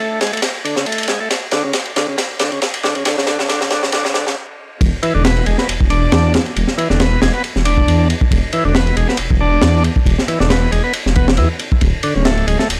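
A bright, shouting tonewheel organ riff opens this energetic, playful breakbeat excerpt at 137 BPM in E mixolydian, lightly overdriven through a slow rotary speaker and tape echo, as a crunchy acoustic drum kit with a tight kick, a high-tuned snare and dark cymbals builds through a fill before a brief stop. At 4.8 seconds the drop lands on an E7 chord, bringing in a deep, rumbling detuned saw bass, saturated and beating, that sits up front with the drums. The swung sixteenth-note groove has a dry, gritty hardware character with little reverb.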